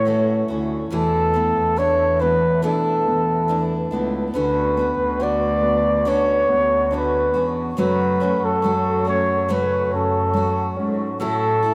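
A breathy flugelhorn with light vibrato carries a tender, emotional pop melody at 70 BPM over a polished grand piano, bright picked steel-string guitar arpeggios, a bowed gut-string chamber cello section on the bass and hollow, mellow flute ensemble chords in the background, moving from A6 through E7sus4, Bmadd9/D and F#m before returning to A6, all in light small-room reverb, with a rough home-demo mix and a faint mains hum across this 11.7-second fragment of a longer piece.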